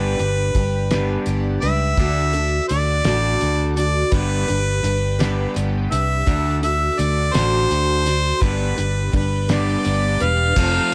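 In a straight 6/8 lilt, this hopeful, jangly folk and heartland rock excerpt features a clear, up-front harmonica melody with tape echo over a shimmering, octave-doubled picked twelve-string acoustic guitar, a dark, slightly broken-up electric guitar riff bathed in spring reverb, a round, punchy fingered electric bass, and a cloth-damped, thuddy drum kit with a fat snare and dark cymbals entering at 0.2 seconds. A very quiet, piping tonewheel organ with slow rotary swirl adds sustained chords from 2.0 seconds, and a jingly tambourine sounds briefly at 10.6 seconds, all in a dry sound as the chords alternate between G and D.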